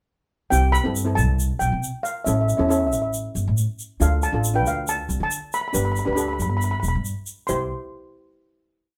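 A straight 4/4 calypso groove at 138 BPM in C major, tuned to A4 = 435 Hz, runs from 0.5 s on a syncopated pizzicato upright bass figure that sounds woody and dark up front, with a close, grainy egg shaker pattern underneath. Two steel pans played with medium rubber sticks give a carefree, sunny mood: one plays syncopated triad chords, while a shimmering, airy upper pan carries a motif-based melody in sentence phrases over a Cmaj7, A, Dm, G progression. The short whole piece, set in a small room with moderate reverb, closes on a final C chord at 7.5 s.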